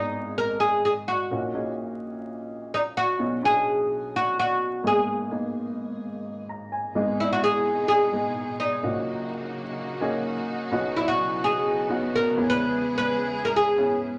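A straight 4/4 pulse at 128 BPM drives this bittersweet, earnest pop piece in G# minor, tuned to A4 = 437 Hz. A bright, plectrum-plucked oud with double strings carries the melody up front, over a dark, woody, slightly detuned upright piano that accompanies through G#m, D#m7/A#, Badd9 and G#madd9 and adds a fill at 6.2 seconds. At 6.9 seconds a lush, bowed string section enters close with smooth, sustained vibrato chords as the progression turns toward E6, all set in a wet studio reverb with a layer of vinyl crackle.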